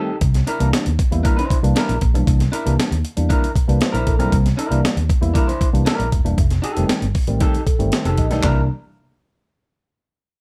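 A slightly broken-up, picked electric guitar and a worn, slightly out-of-tune tine electric piano with subtle chorus open this strutting, gritty funk snippet in C mixolydian at 117 BPM, joined at 0.2 seconds by a dark, foam-muted vintage bass and an up-front, compressed breakbeat kit with a thumpy kick, high-tuned snare, hi-hat and handclaps. The harmony sits on C9 before moving to F9 at 6.4 seconds, while the electric piano adds stabs and short fills. The sound is dry, with the bass and drums louder than the guitar and keys.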